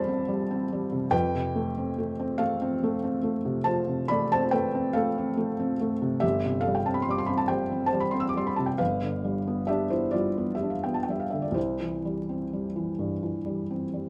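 In a rubato 12/8 pulse of 41-49 dotted-quarter beats per minute, this nostalgic, tender fragment of a romantic classical nocturne features a solo felt-muted upright piano, soft, mellow and intimate with short sustain and audible action noise, spanning G1 to F6 up front under close, detailed microphones with light reverb and vinyl crackle, as the harmony drifts from Am7 through F and C5/G to settle on C at 11.6 seconds.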